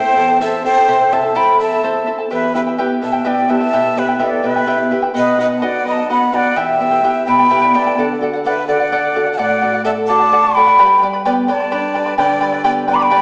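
A reverberant church or concert-hall space with a small-speaker character gives this short Andean folk passage, cut from a longer piece, an earthy, melancholic air. It moves at 85 BPM in a straight 6/8 in E minor, with the chords passing from Am through Em and B before settling toward D and G as a new section begins at 8.0 seconds. The lead cane quena carries the melody with an airy, mellow straight tone and tongued notes, set back at a distance in the room. A second quena sits beneath it, breathy and bright with vibrato, soft attacks and an unsteady quality. The charango's fingerpicked double strings add a shimmering accompaniment, some courses doubled at the octave. A small-sounding fingerpicked nylon-string guitar supports the lower end and slips in a brief fill from 7.3 to 8.0 seconds.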